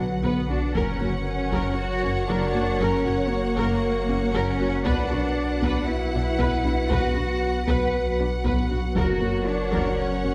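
A rich, bowed cello section carries the low line of this relentless, tense hybrid orchestral and electronic film score excerpt, joined by a rich double bass section and a round sine sub bass. A lush violin section with vibrato adds a second line, while a lush viola section with vibrato, a mellow French horn section and an ethereal, detuned pad with ensemble chorus hold chords over a tight, driving sawtooth synth arpeggio with chorus and delay. A distant, very quiet taiko ensemble strikes from 0.8 to 1.8 seconds and returns at 4.9 seconds, all within a moderate scoring stage reverb over Bm and F# chords.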